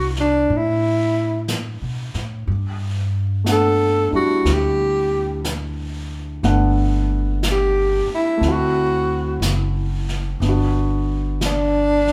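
A breathy, close-miked tenor saxophone with vibrato carries the melody up front in this slow, intimate and romantic swung jazz ballad, soloing until 10.4 s in a passage cut from a longer piece. A natural-sounding grand piano with audible action noise accompanies through chords moving from D13 to Gmaj9 and D7 before arriving on Gmaj7, while a woody, growly pizzicato upright bass sits up front and a distant brushed drum kit enters at 0.2 s with snare and hi-hat. The band plays live together in one large studio room, held in a moderate reverb.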